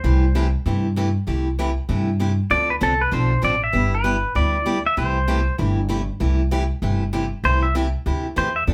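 A wet studio ambience with a short tail surrounds this down-home, swinging western swing cut, played live in one room and taken from a longer piece. It moves at 195 BPM in 4/4 with a 62% swing on the eighths, in C major, over a C6, Dm7, G6 and back to C6 progression. An upfront upright bass carries the low end, plucked pizzicato on steel strings with a woody, acoustic tone, while a bright parlour acoustic guitar with fresh strings picks out the accompaniment throughout. The electric pedal steel guitar, clean, compressed and twangy, played with fingerpicks and slide and shaped by volume swells, sits up front with the melody, sounding briefly at the start and returning at 2.5 seconds. From 7.4 seconds it takes a solo that carries the recording to its end.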